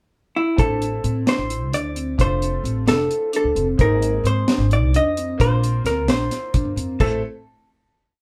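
A moderately roomy live-band sound frames this tense, intricate progressive instrumental in a fast 7/8 in A phrygian, where a dark, clean hollow-body jazz guitar leads with arching motif-based phrases from 0.4 seconds, over a woody, growly upright bass riff, a dry reggae drum kit with a high-tuned snare and a tight kick, a ringing vibraphone ostinato with slow motor vibrato and delay, and bright held rootless piano chords in the background, moving from Am through F, G#add9 and Bbsus2 before resolving on a final Am chord at 7.0 seconds.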